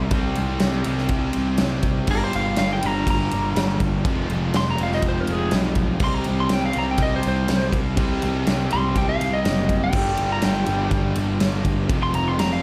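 A slightly broken-up, twangy lead guitar solo opens this aggressive, heavy hard rock excerpt from the first moment, its compressed, picked melody carrying a slapback echo above a dense wall of riffing guitars. Beneath it, three overdriven rhythm guitars sit in the background: one crunchy and warm, one bright, and one sludgy and double-tracked, each grinding through a riff of its own. A fuzz-soaked picked electric bass, direct and amped, adds a punchy, growling floor. The huge arena drum kit sits up front with a punchy kick, a medium-tuned snare and bright crash and ride cymbals ringing in a big, natural room. The harmony cycles through C minor, G minor and F minor in a straight, driving 4/4, and moderate studio reverb gives the whole band a sense of space until the clip ends at 12.6 seconds.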